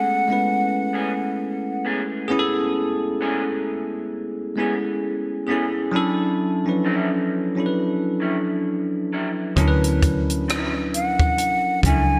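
This sensual neo-soul R&B excerpt at a slow 66 BPM in A major, with a light sixteenth-note swing, opens on a hollow, airy jazz flute over a bell-like tine electric piano bathed in lush chorus, moving from Amaj9 to Dmaj9. From 0.9 seconds a dark, slightly broken-up electric guitar picks a quieter, lo-fi second line that also carries chorus, and the flute comes back near the close. At 9.6 seconds a round, foam-muted dub bass and a tight cocktail kit with punchy kick, hi-hat and rim click arrive, the drums treated with gated reverb, all set in a moderate hall with a bright 1980s-style digital sheen.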